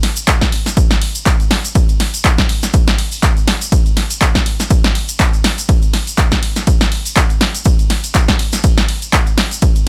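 A dry, close mix opens this short house excerpt, cut from a longer piece, with a driving, hypnotic pulse at 122 BPM in 4/4 and a 56% swing on the sixteenths. A punchy analog drum machine sits up front from the very start, its handclaps, hi-hat, ride cymbal and tape-warm snare carrying the feel of a small room. An electronic kick drum arrives at 0.3 seconds, also up front and the loudest part, its analog thump bearing the air of a large room. Behind them, a grainy, mellow tube shaker sounds distant and set back in a large space, adding an acoustic texture beneath the machines. The whole passage stays in a single section, a steady percussion-only groove.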